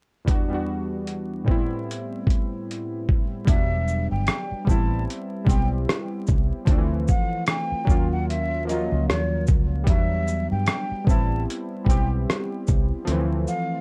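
Detuned sawtooth keys open this nostalgic, hazy lo-fi hip hop piece at 0.2 s, sitting up front with warm, decaying chords shaped by chorus and a low-pass filter. A dusty sampler-style drum kit of kick, hi-hat, rim click and shaker joins almost at once, compressed and overdriven, with 12-bit grit, a thumpy kick and the character of a small room. The groove moves at 75 BPM in 4/4 with a swung 16th-note feel in E minor. At 3.5 s a dark, round, punchy foam-muted electric bass enters alongside a breathy silver concert flute, which carries the melody in a mellow, straight, slightly unsteady tone, close-miked and softened by low-pass filtering, analog delay and plate reverb. The harmony cycles through minor seventh chords from Em7 and Am7 to Dm7 and D#m7, all under a veil of vinyl crackle and light reverb, and the kick falls silent at 13.1 s as the cut ends.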